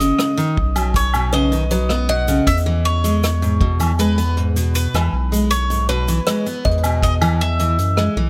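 Warm and delicate, this short folktronica fragment moves at 79 BPM in straight 4/4, shifting from Badd9 to E at 2.5 seconds. A bright, double-strung bowl-back mandolin carries the melody with delay over full-bodied picked arpeggios from a dreadnought steel-string acoustic guitar, also delayed. A deep, round analog bass sits up front, a natural-sounding brush kit taps hi-hat, rim click, shaker and woodblock, and a dry, tight kick enters at 0.6 seconds. A tinkling music box joins at 1.3 seconds with a second line through digital delay, all within a small room's reverb.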